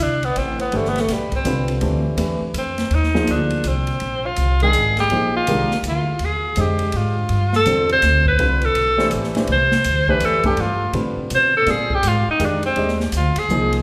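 A spacious, reverberant hall surrounds this modal jazz recording, cut from a longer piece, and lends it a spiritual, searching air. A clear tenor saxophone sits up front and carries the melody as a solo throughout, its vibrato and soft attack giving it a vintage jazz character. An upright bass plays pizzicato on gut strings with a woody, thumpy tone, joined at 0.2 seconds by a swinging big-band drum kit that sounds airy and polished, with dark cymbals, a medium-tuned snare and a punchy kick. A warm, natural baby grand piano enters at 0.7 seconds as accompaniment. The swung 3/4 groove moves between G9sus4 and Bb9sus4 chords, and the saxophone stops at 13.7 seconds, just before the rest of the band.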